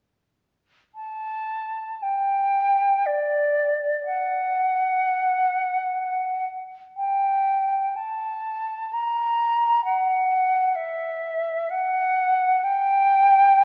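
This classical excerpt features a solo concert flute, entering at 0.9 s and singing a yearning, mournful line between D5 and Bb5 with an airy, tongued tone and expressive vibrato. The flute sits up front yet sounds somewhat distant in a wet concert hall reverb. A worn, warbling cassette-tape quality adds pitch drift and lossy compression artefacts that give the recording an aged character.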